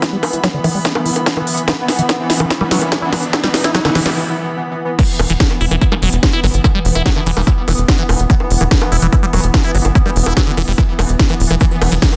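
A heavy, overdriven electronic kick leads this intense, psychedelic trance excerpt at 145 BPM, driving beside an up-front techno kit of cracking snare, smooth hats, ride, crash and bongos, while a squelchy, resonant acid bass riff is filter-swept through the build-up and drum fill alongside a pulsing, detuned gated texture, a breathy background pad and a very quiet riser, before a short break at 4.2 seconds gives way to a drop where a tight, punchy sequencer bass enters at 5.2 seconds and a grainy egg shaker and a brief, saturated formant-wobble bass surface near the end in a dense, heavily limited mix.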